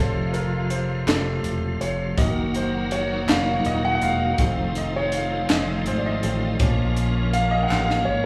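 Piano, organ, strings and bass sound together from the opening moment of this slow, solemn and fervent gospel passage in 6/8, moving at 54 beats per minute in dotted quarters and cut from a longer piece. A clear, intimate grand piano sits up front carrying the lead, its action noise audible, while a fingered electric bass anchors the low end with a direct tone. Alongside them, a tonewheel organ holds sustained chords with a piping, scooped character, light overdrive, key click, chorus vibrato and a fast rotary speaker, and a lush symphonic string section adds soft-attacked, bowed chords in the background. A crisp fusion drum kit with a high-tuned snare and punchy kick enters at 0.3 seconds, joined at 1.1 seconds by a very quiet, close and dry group handclap, and the drums close the passage with a fill from 7.7 seconds. The harmony moves from F through Ebm/Gb and F7 to Bbm, all bathed in a reverberant recital-hall ambience.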